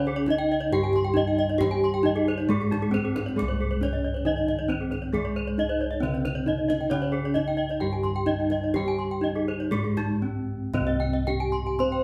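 The band plays live in one moderately reverberant stone room, with a 1.1-second ring hanging around the bronze. This brilliant, hypnotic Balinese gamelan passage, cut from a longer piece, moves in a straight 4/4 at 115 to 136 BPM in C pelog. The lead metallophone carries the melody up front with a dark, smooth, horn-mallet tone and the shimmering beats of paired tuning. Beneath it, a lower metallophone struck with a wooden mallet supplies a boxy, warm accompaniment, while bright, round bossed gongs hold the bass. Two further metallophones weave arpeggios with the same paired-tuning shimmer: one airy, the other close-miked, dry and full. The kendang sits deep in the background, and after a break from 10.0 to 10.8 seconds the music moves into a new section.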